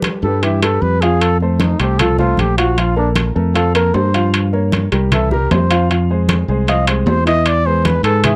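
Sophisticated and lively, this short Afro-Cuban jazz fragment features a dark, breathy trumpet solo with vibrato and scooped notes up front, over a fingered electric bass that sits direct and forward, a woody upright piano comping naturally, ringing metal-shell timbales and damped, low-tuned congas in the background, all captured in a dry, close 1970s-style studio sound with light reverb.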